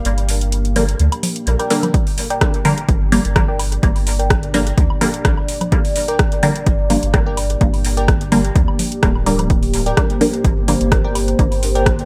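A punchy, overdriven electronic kick sits up front from 1.9 seconds, driving this deep, hypnotic dub techno excerpt in G minor at 127 BPM with a light 16th-note swing, after a brief opening break. Beneath it a round, soft dub sub bass and a dark, detuned analog pad with chorus, phaser and sidechain pumping hold a Gm chord, while a bright, muted filtered chord stab with phaser and dub echo and a crisp, warbling wavetable chord stab add pumping, echoing accents. A deep house kit with metallic, overdriven hats and rim clicks, dry congas and woodblock in the background, and a bubbling resonant filter texture that drops out at 2.0 seconds complete the picture under light reverb.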